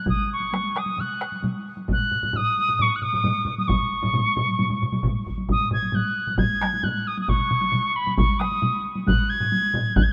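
A straight 4/4 pulse drives this powerful, ceremonial Japanese traditional taiko excerpt, where four layers of hard- and heavy-stick drums (one in a live room, one compressed and saturated that drops out at 8.7 s, one close and dry, and a heavy-stick layer joining at 1.9 s) sit beneath an up-front, high wooden piccolo whose pure, reedy, tongued line with vibrato carries the melody, all bathed in a huge ambient reverb.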